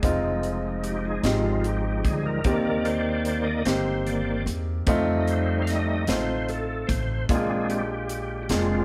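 Uplifting and jubilant, this short cut from a longer slow gospel piece moves at 50 BPM in a straight-feel 6/8, counted in dotted quarters. A bright, reedy tonewheel organ takes the solo across the full 8.8 seconds, sitting up front with key click, chorus vibrato and a fast rotary speaker coloring its sustained chords. Beneath it, a clear upright piano with a natural, woody tone supplies accompaniment, while a pizzicato upright bass on steel strings gives a dark, thumpy low end. A crisp, airy and polished fusion drum kit rounds out the band on hi-hat, a punchy kick and a high-tuned snare. The harmony moves from Fm7 through Cm7/Eb and F7 to Bb7, and the group plays live together in a stone room whose moderate reverb lends the ensemble a sense of space.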